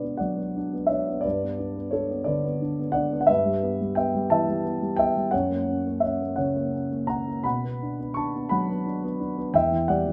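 Close, detailed microphones and light reverb frame this tender excerpt of lyrical classical solo piano in B minor, where a dark, mellow concert grand with deep bass, a boxy, up-front tone and audible action noise moves through chords from Bm to Gadd9, Em/G and F# in a rubato 6/8 at 58 BPM, spanning E2 to C#6 over about 10.1 seconds of an intimate passage cut from a longer piece.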